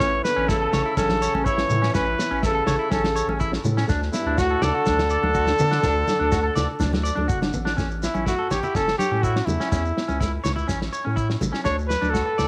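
A warm, jazz-style trumpet leads up front with vibrato and scooped notes, joined by a clear, pop-style trombone second line in the background until 7.3 seconds, both carrying cassette tape echo. This is a joyful, carefree highlife guitar band cut from a longer piece, moving at 124 BPM in A mixolydian between A and D chords. Beneath the horns, a twangy, slightly broken-up electric guitar plays fingered arpeggios, a full-bodied, very quiet nylon-string guitar is thumb-plucked, a deep, thick saturated sub bass holds the low end, and a warm soul drum kit with a tight kick and medium-tuned snare plays alongside a grainy shekere, with ringing congas entering at 0.7 seconds, all in a small-room home cassette recording with light reverb.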